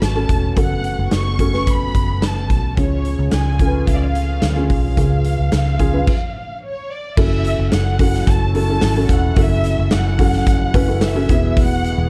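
Dramatic and bittersweet, this piano-driven pop fragment sets a mellow felt-muted upright piano beneath a lush, distant violin section singing the melody with vibrato and portamento, while a round, foam-muted electric bass and a punchy, up-front arena drum kit drive it forward, a detuned sawtooth pad with chorus sustains chords in the background, and a brief stop at 6.1 seconds gives way at 7.2 seconds to a new section, all wrapped in a dark production with light small-room reverb.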